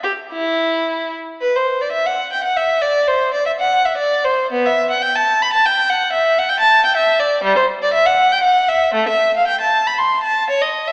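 Classical in a baroque suite style, this short excerpt cut from a longer movement features a single unaccompanied violin in 3/4, moving with a flexible, rubato feel at roughly 106-126 BPM. The mood is serene and radiant, opening in G major before turning toward E minor at 7.4 s. The solo violin sits up front with a clear, smooth tone and vibrato, its bowed line spanning from G3 up to C6 and sounding even throughout. It plays alone for the whole 10.9 seconds. The instrument is bathed in a lush concert hall reverb with a long 2.4-second decay, suggesting a church or hall, though the overall sound comes across as if heard through a small speaker.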